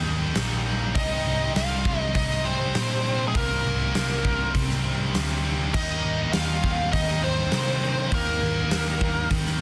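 A dense, heavily limited modern master with light reverb and lossy artefacts carries this menacing, aggressive hard rock clip in C minor at 101 BPM, where three picked, distorted rhythm guitars (one compressed, one scooped, one double-tracked and very quiet) play a riff in the background over a round hollow-body bass, joined at 0.4 seconds by a huge arena kit up front with bright cymbals, a punchy soft-clipped kick and a pumping hall sound, and from 0.9 seconds by a biting overdriven lead with tape echo carrying the melody, above which a dark octave-fuzz second line enters at 1.0 seconds.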